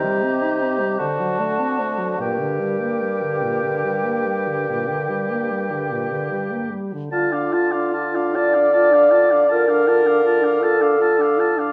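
Yearning and solemn, this slow, rubato classical wind-quintet movement in 12/8 at 47-54 BPM sets a hollow, mellow silver flute melody above a lightly vibrato oboe second line, a dark, soft-edged clarinet and a smooth-topped French horn in the accompaniment, and a clear, present bassoon bass, all in a wet recital-hall reverb as the harmony moves from Cm through D7 to G minor before turning to D minor at 7.1 s in this fragment of a longer piece.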